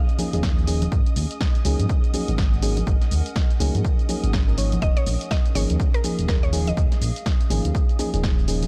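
Opening at 0.0 seconds with a woody, mallet-like synth pluck melody with chorus and tape echo over a silky string machine and a warbly, lo-fi tape-like pad, both pumping behind, this warm, late-night deep house excerpt in Eb minor at 123 BPM settles into a swung 16th groove as a punchy analog drum machine with hi-hat, shaker and snare, bright, close congas, round FM electric piano stabs with cassette-tape grit and echo, a smooth, dark gliding synth bass with tube saturation, and an up-front kick drum in a large room join, with the piano and bass also pumping. The harmony moves from Eb9sus4 to Ab9sus4, and the pluck returns at 4.8 seconds as Eb9sus4 comes back.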